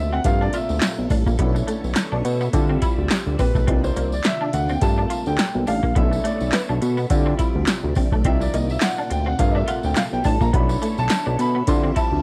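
A swung 16th-note groove at 105 BPM in 4/4 drives this slick, danceable early-eighties boogie funk cut from a longer piece, with an overdriven electro analog drum machine up front (deep kick, punchy snare, metallic hats and handclaps) alongside a jingly acoustic tambourine and a fat, detuned sawtooth bass. A clear, smooth grand piano takes the solo throughout the full 12.2 seconds over minor-eleventh chords cycling from Gm11 through Bm11, Dm11 and Cm11. A twangy, slightly broken-up electric guitar riff with ensemble chorus and a swirling, phased string machine in the background complete the arrangement, all colored by a home cassette recording with light reverb.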